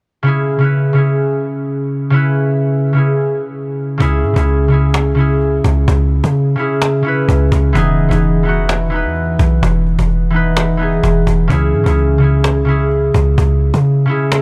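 A fingerpicked concert harp sits up front from 0.2 seconds, its ringing acoustic tone filtered through a low-pass filter as it plays the accompaniment alone over a C# minor chord. This melancholic yet hard-hitting trap cut, taken from a longer hip hop piece, moves at 128 BPM in 4/4 with a half-time feel. At 4.0 seconds a deep, boomy 808-style bass enters, a sine tone with a noise layer, fast attack and mellow decay. A cajon arrives with it, woody and band-limited, with soft hands, faint snares and a vintage character. The harmony shifts to Emaj7 before returning to C# minor, and a studio reverb places the whole ensemble in the room.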